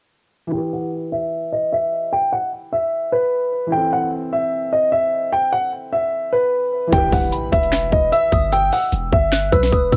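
A dark grand piano carries the melody in this melancholic, menacing trap piece, its vintage tone sitting up front with audible action noise, softened by a low-pass filter and cassette-tape coloring. Beneath it, a felt-muted upright piano adds muted, natural accompaniment, while a filter sweep runs through the opening section over a move from Em to Am/E. At 6.9 seconds a very quiet electronic impact marks the arrival of a half-time trap kit, placed up front with a hard-clipped kick, sharp snare, metallic hats and handclaps. Alongside the kit comes a long, deep 808-style sine bass with a fast attack and a mellow decay. A gentle FM synth bell enters high above at 7.3 seconds as a second line, shimmering with chorus, tremolo and analog delay. Light reverb and the home-cassette recording give the whole a worn, lo-fi character.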